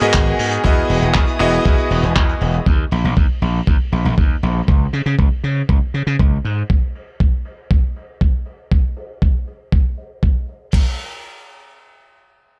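A dry, damped 70s kit, whose darkened crash, handclaps and hi-hat run under a filter sweep in a small room, opens this sensual, groovy nu-disco fragment and is soon joined by a thumpy, gritty electronic kick sitting up front. A clangy, cutting electric grand piano with delay and pumping, veiled muted strings held in the background both open the piece and drop away by 2.6 seconds. An overdriven, punchy slap bass carries on until 6.6 seconds, leaving the drums to play on alone.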